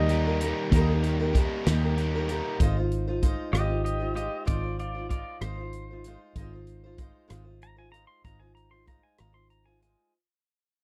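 A straight 6/8 lilt at 64 dotted-quarter beats per minute carries this open-road, jangly slice of folk and heartland rock, in which a natural country drum kit with punchy kick, medium-tuned snare, hi-hat and rim click sits under a round, up-front fingered electric bass. A boxy old ladder-braced acoustic guitar plays picked accompaniment while a crunchy, double-tracked overdriven guitar riff sounds only until 2.6 s, when the harmony moves from Eb to Ab6. Throughout, a clean, compressed, twangy pedal steel guitar plays a solo with fingerpicks, slide and volume swells, all captured in a dry, close 1970s-style studio recording that fades out across the whole passage.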